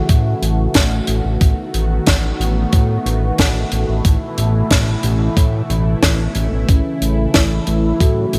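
Synthwave at 91 BPM in A major with a dreamy, uplifting mood, this short cut from a longer piece sets a smooth, detuned sawtooth pad with chorus and sidechain pumping over a fat, saturated bass, a thumpy sampler-style electronic kick and an airy, polished acoustic kit with a high-tuned snare, moving from A through B7/A and Esus4/A back to A, before a round, dark triangle-and-sine lead with sub octave, vibrato, phaser, digital delay and 12-bit grit enters at 6.7 seconds, all in a bright 1980s-style digital production with light reverb.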